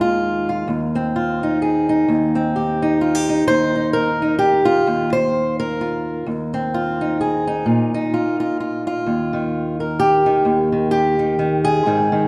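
Moving in a lilting 3/4 at 129 BPM with a light swing on the eighth notes, this short folk passage is a peaceful, nostalgic solo for fingerpicked steel-string acoustic guitar in Eb major, spanning from Eb2 up to C5 and sitting up front with a warm tone. Its open, suspended harmonies drift from Ebsus2 through Cm/Eb and Eb6, pass through a chordless stretch at 3.5 seconds, then return and lean on Bbsus4 before settling onto Ebadd9 as a new section begins at 9.1 seconds. A wet concert hall reverb with a long tail surrounds the guitar, giving this cut from a longer piece a spacious, church-like resonance.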